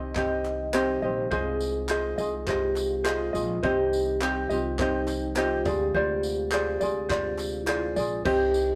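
Fingerpicked ukulele sits up front in this tender, wistful acoustic pop excerpt at 104 BPM, joined by a ringing soft-mallet vibraphone with fast motor vibrato, a round tonewheel organ with key click and slow rotary speaker in the background, a woody pizzicato upright bass, a distant brush drum kit with dark cymbals, and very quiet hollow group handclaps, all moving through Cm, Ab6/C and Dm7b5 in a rough rehearsal-room sound with tube saturation and light reverb.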